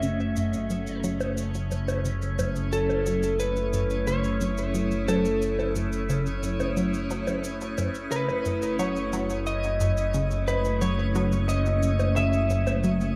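This mysterious, expansive excerpt of sequencer-driven ambient space music opens with every part at once: a fat, saturated analog bass holding F#1 up front, a tight, detuned sawtooth synth riff through chorus, phaser and delay, and an evolving, morphing wavetable pad sustaining chords through phaser and its own reverb. At a straight 89 BPM in 4/4, a slightly broken-up electric lead guitar carries the melody through delay, while a twinkling granular texture adds octave-up shimmer and electronic cabasa and bongos sit low with delay. It all rests on F# minor in F# dorian, bathed in a moderate spring reverb and an echo-heavy cassette-tape mix.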